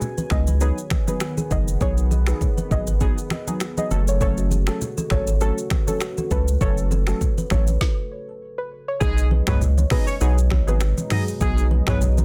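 A dense, heavily limited modern master with little reverb and a faint mains hum frames this breezy, sunny afrobeats clip, cut from a longer piece and moving at 100 BPM in 4/4 with a light 16th-note swing in B mixolydian, its chords shifting between B6 and F#m. Up front, an electronic afro-pop drum kit sets the groove with a deep kick, a woody snare with soft clipping, metallic hats, finger snaps, rim clicks, shaker and toms. A round sine sub bass sits beside it, while low-tuned, damped congas with a thick-skinned, soft-handed feel add acoustic texture in the background. Mellow sawtooth analog keys with chorus and a filter sweep carry the accompaniment. A gentle, wave-folded pluck with chorus and digital delay plays the melody, and a hollow, fingertip-plucked kalimba riff rings through delay. Underneath, a moody, detuned ambient pad with a sub octave and long release holds sustained chords, and after a stop at 7.8 seconds a distant, roomy horn section with light vibrato and octave doubling enters at 9.0 seconds as a second line.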